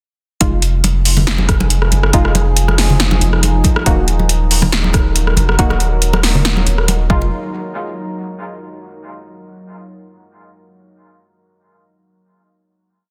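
A round, soft sub bass sits up front with long dark notes through this heavy, brooding deep dubstep piece at 139 BPM in a half-time feel, under an overdriven, deep electronic kick and a punchy drum kit of rim clicks, metallic hats and snare, re-recorded in a large room. Muted, detuned chord stabs with chorus, tape colour and dub echo scatter sparsely over the Fm7 and Ebm changes, while bright, thin-skinned congas echo in the background and a moody sawtooth pad with a slow attack enters at 1.0 seconds to hold sustained chords. The drop runs from 0.4 to 7.3 seconds before a final hit closes the piece in a dense, heavily limited modern master.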